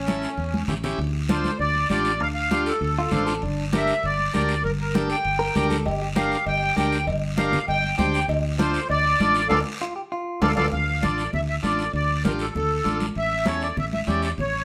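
A reedy, sweet accordion with light tremolo tuning leads this driving, fiery cumbia in D minor at 197 BPM, over a round, dark fingered electric bass up front, buzzy vintage combo organ accompaniment, damped high-tuned congas and a raspy, dry guiro, while a bright, clean, picked electric guitar adds a compressed second line from 3.0 s, ringing cowbell and timbales sit in the background from 5.9 s, and after a drum fill and a band accent the tune turns to D harmonic minor at 10.7 s, all captured as a band playing live in one room with moderate studio reverb.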